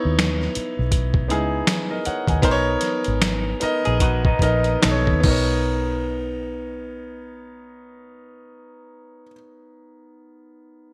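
A clear, intimate grand piano opens this sensual, smooth neo-soul and R&B excerpt, sitting up front with its action noise audible, and it carries the accompaniment through to 10.9 seconds. A dark, round, foam-muted electric bass enters almost at once, while a gritty, compressed boom bap drum kit adds a thumpy kick, a medium-tuned snare, hi-hat, finger snaps and crash cymbal, pitched down and treated with gated reverb, until it stops at 5.5 seconds. The swung groove slows down across the opening section, with the harmony moving from C#m9 to Bmaj9 and briefly through B9. For a moment around 3.9 seconds, a slightly broken-up, lo-fi electric guitar through a small old amp slips in a fingered second line with subtle chorus, sitting lower in the mix than the other parts. After the drums drop out, piano and bass carry the second section, and the bass stops at 9.3 seconds, all framed by light reverb and a bright 1980s-style digital production.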